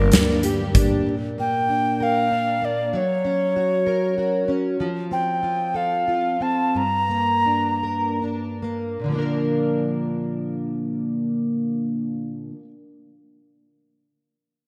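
An airy, reedy clay alto ocarina sings a vibrato melody over double-tracked, full-bodied fingerpicked steel-string acoustic guitar and thumpy, woody pizzicato upright bass as this swaying, romantic six-eight pop ballad in Bb major opens at around 46-65 BPM, a brief punch of huge arena drums with fat snare and kick marking the start before the bass drops away by 1.0 s, the tempo slows from 4.8 s, and the ocarina stops at 8.2 s, leaving the guitar ringing in a lush hall reverb with a bright 1980s-style digital sheen.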